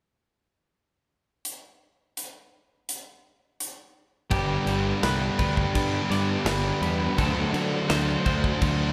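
A big, up-front acoustic rock kit opens alone at 1.4 seconds, its punchy kick, medium-tuned snare, hi-hat and bright crash cymbals ringing in a large room, setting a straight 84 BPM pulse in 4/4 for this dreamy, blissful shoegaze and dream pop fragment in G major. At 4.3 seconds the band arrives on a G chord: a crunchy overdriven guitar riff sits up front with a reverse-reverb haze, a thick fuzz guitar plays its own riff lower in the background with subtle chorus, and a twangy clean guitar arpeggiates high behind them through subtle chorus and analog delay. A growling, overdriven picked bass anchors the bottom as the harmony moves to D7 at 7.2 seconds, all wrapped in a light, small-room reverb.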